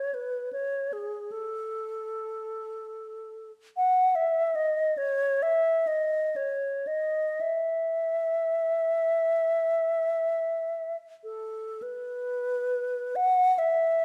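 Lyrical and nostalgic, this brief classical fragment of a longer piece features a solo alto flute moving freely in E major, with rubato pacing between 43 and 77 BPM in 4/4. The flute sits up front with a pure, warm tone, vibrato, tongued notes and lifted highs, ranging from G#4 to F#5. A moderate recital hall reverb surrounds the line, and a new section begins at 11.8 seconds and runs to the end at 14.0 seconds.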